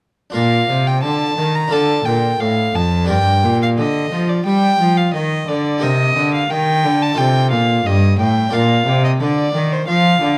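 A bowed violin and cello with gut-string tone enter together with a plucked harpsichord at 0.3 s, opening a serene, dance-like baroque-style sonata movement with continuo in a straight four, cut from a longer piece. The violin carries the melody in a reedy period style, up front and close, while the cello sits a touch louder beneath it as a rich bass, and the Italian-style harpsichord fills out the accompaniment with a brilliant, full sound from its three sets of strings. Close, detailed microphones capture the trio, set in a moderate recital hall reverb, as the harmony moves from Bb through Gm and F7 back home to Bb before all three stop at 10.4 s.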